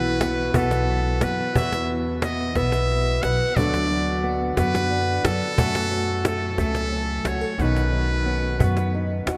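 A 6/8 pulse at 60 BPM, counted in dotted quarters with a straight feel, carries this pastoral, nostalgic acoustic folk piece for a small band, cut from a longer work. A muted trumpet sits up front as the solo voice, its metal mute lending a buzzy, thin, punchy tone with a smooth top and a classical poise as it sings the melody between A4 and F#5. Beneath it, an old ladder-braced acoustic guitar is fingerpicked with a boxy, woody darkness and aged strings. A clean semi-hollow electric guitar adds fingered arpeggios coloured by harmonic tremolo. A pizzicato upright bass anchors the low end with a dark, wooden resonance, and a snappy cajon with snares, close and dry, joins at 0.2 s. The harmony drifts from Bsus4 through B5, Esus2, Bm/D and F#m to a closing Badd9, all set in a vast, echoing cathedral reverb with a long 6.3-second tail.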